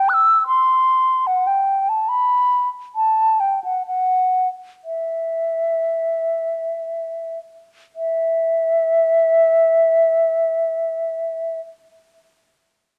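A mellow wooden flute plays alone from 0.0 to 11.6 s, its pure tone, vibrato and soft attack placed up front by close, detailed microphones in a recital hall with moderate reverb. This grave, introspective baroque-style fantasia in E minor moves in free rubato at 54-78 BPM, slowing through its first 8.0 seconds before a new section begins. Ranging from E5 to F#6 with rolled-off highs, the piece is cut from a longer work.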